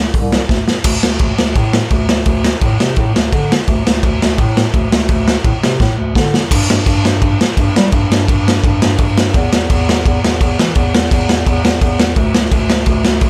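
This rowdy, energetic punk rock excerpt opens with a mellow bass clarinet carrying the bass line, its soft attack and smooth top shaped in a classical style between C2 and G3. A raw garage drum kit joins at 0.1 s, plays a quick fill at 0.5 s, then drives a straight 4/4 at 170 BPM on kick, snare, hi-hat and crash cymbal. The acoustic kit sits up front, with a punchy kick, a medium-tuned snare and a gritty, saturated sound whose rolled-off top and pumping small-room character give it a rough edge. The bass clarinet stays lower in the mix, a gentle classical voice beneath the pounding drums. Another drum fill at 5.8 s leads into a new section at 6.5 s, and the whole take stays dry with little reverb.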